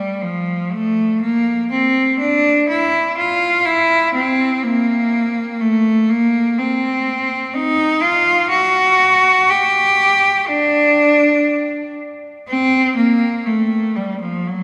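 A single bowed cello opens this excerpt from a classical, baroque-style suite movement for unaccompanied cello, flowing and grave in mood. It moves at around 61 BPM in 3/4, with a rubato feel that lets the line breathe freely, and settles into G minor from 6.6 s. The one player's tone is clear and intense, with vibrato and a smooth top end, staying between F3 and G4. The cello sits up front, yet a wet church reverb with a 3.5-second decay surrounds it, giving the sense of hearing the performance from further back in a resonant space. The cello plays alone throughout the full 14.6 seconds, a brief passage cut from a longer piece.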